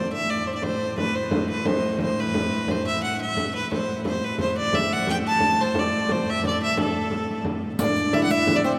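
A clear, nasal fiddle carries the melody up front over a rich, ringing viola da gamba drone and a deep, band-limited frame drum in this mysterious, driving medieval dance in A dorian at 117 BPM in 6/8, with a woody oud second line in the background and a very quiet riq with bright jingles both joining at 7.8 s, all bathed in a long cathedral reverb.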